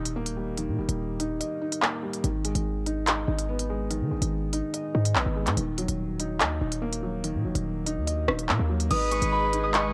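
A punchy, heavy 808-style bass with a sine body and noise layer drives this cold, dark drill excerpt at 144 BPM in half-time G# minor, joined by a crisp-hatted electronic kit of crash, handclaps, hi-hat and rim click whose kick drops out from 1.4 to 2.2 seconds, and by a soft, felt-muted upright piano with audible action noise and cassette-tape grit; from 8.9 seconds a ringing, fingerpicked Celtic harp melody, an airy, unsteady silver flute line with tape echo and a dark, sul tasto string section holding sustained chords arrive, the whole heard in a small, lightly reverberant home-cassette room.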